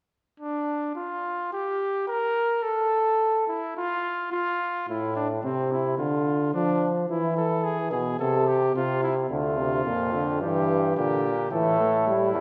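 Solemn and contemplative, this classical imitative canzona for brass ensemble moves at 108 BPM in D minor, opening with a mellow, smooth-topped trumpet playing alone before a clear euphonium with light vibrato enters at 4.9 seconds. A bright bass trombone, distant and roomy, joins at 9.3 seconds to anchor the bass as the harmony moves through Dm and Gm toward a closing A5. The three brass voices sit in a recital hall reverb that lends the cut-down passage a churchly glow.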